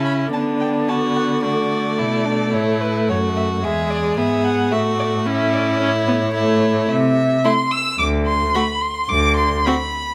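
Cheerful and lively, this brief excerpt from a quick classical-period movement for string quartet moves at 109 BPM in 4/4 with a rubato feel. The first violin carries the melody high between B4 and E6, its warm, smooth tone with vibrato sitting up front yet sounding slightly distant, and it plays through to 10.1 s. Beneath it the second violin plays a close, even second line, the viola supplies a bowed accompaniment in its middle register, and the cello holds the bass from D2 to D3. These three lower parts share a clear, vibrato tone and stop just before the melody does. The harmony moves from D through A and E, touches a rootless Am/C, passes a chordless stretch at 8.0 s, and closes on a D7 sonority. Close, detailed microphones capture the quartet in a recital hall with moderate reverb.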